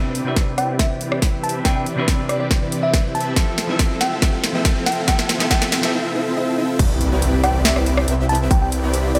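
Future bass at 140 BPM in a half-time C major feel, this lush, euphoric excerpt builds over Cmaj9 and Fmaj7 with a huge, compressed supersaw riff under a filter sweep, a sparkling bell-like FM electric piano melody, a dark, clean semi-hollow guitar with dub echo, a very quiet ethereal pad, faint risers and swells, and an overdriven trap kit with sharp snare, metallic hats and a hard-clipped electronic kick, then breaks at 5.9 seconds before dropping at 6.8 seconds as a thick, detuned saw bass joins with an impact in a lush hall reverb.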